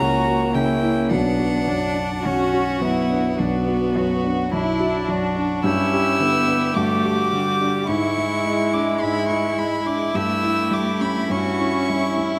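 Close, detailed microphones catch this serene, lyrical piano quintet fragment in a moderate scoring-stage reverb. At a rubato 53 BPM in 4/4, a pure, floating solo violin sings the melody high above a dark, mellow concert grand with deep bass, while the viola adds a woody, distant accompaniment. A second violin with an airy, intimate bow and a soft-edged, distant cello weave the second lines, every string part played sul tasto, as the harmony drifts from F#7/C# through B minor, Em7/G and E7/G# to A7/G.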